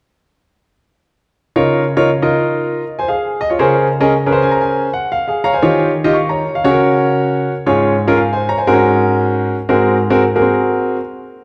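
A clear, natural grand piano sits up front in this soulful, reverent gospel passage cut from a longer piece, accompanying at 118 BPM in Db major with a swung eighth-note feel through rich chords from Db69 to Ab9, adding a brief fill at 4.1 seconds, and ringing into the long, wet reverb of a recital hall within a dark production.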